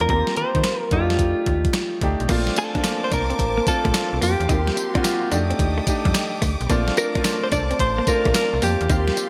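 Bright 1980s-style digital production with a moderate plate reverb frames this short, upbeat and flirty new jack swing passage in Bb major, moving at 109 BPM in 4/4 with a 67% swing on the 16th notes. A crisp 8-bit drum machine sits up front with a thumpy kick, fat snare, handclaps, hi-hat, tambourine and crash cymbal, all given a gated reverb and a sampler-style character re-recorded in a small room. Beneath it, a slap-like FM bass brings a snappy, metallic attack that decays into a mellow tone, while a concert grand piano with deep lows and a lush chorus supplies the accompaniment. A clean, direct-recorded electric guitar carries the melody, picked and compressed with a subtle chorus, over chords of Eb69 and F13 that settle on Bbmaj9. At 2.3 seconds a second clean guitar enters in the background with a scooped, chorused riff, joined by a symphonic string section holding sustained chords with vibrato, portamento and warm, expressive bowing.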